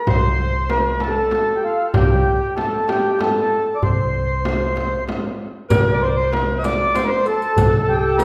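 A stately, passionate 6/8 sway at 64 BPM carries this excerpt from a longer Arabic maqam ensemble piece in C maqam rast, where a reedy, up-front accordion sings the melody over a vibrato-laced, distant alto saxophone second line, a woody pizzicato upright bass holding C2, a soft-handed clay-shell darbuka, and a small, bright frame drum, with a dark-jingled, saturated riq slipping into the background at 5.7 s, all set in the lingering reverb of a recital hall.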